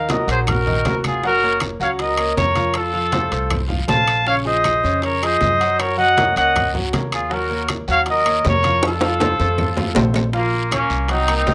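A rough home demo mix with moderate studio reverb frames this driving, passionate salsa passage in Bb minor at 158 BPM, cut from a longer piece. A punchy, tight trumpet section with light vibrato sits up front on the melody, backed by brilliant grand piano accompaniment and a dark, thumpy pizzicato upright bass on gut strings. Ringing, close timbales lead the percussion, with thin-skinned, low-tuned congas and woody claves in the background, very quiet round bongos and a raspy guiro, before a drum fill at 8.8 seconds.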